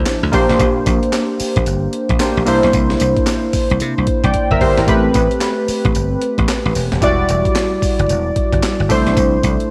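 Detuned analog keys with chorus and a cassette-tape tint open this confident new jack swing excerpt at 0.0 seconds alongside a bright, foam-muted slap bass, moving through Bb69 and C9 chords at 112 BPM with a swung 16th-note feel. A gritty, pitched-up sampler-style breakbeat kit with a thumpy kick, handclaps and tambourine drives the groove and plays a fill at 4.3 seconds. At 4.9 seconds the music settles into A dorian over Am9, Em9 and C69 chords, in a lightly reverberant home-cassette sound.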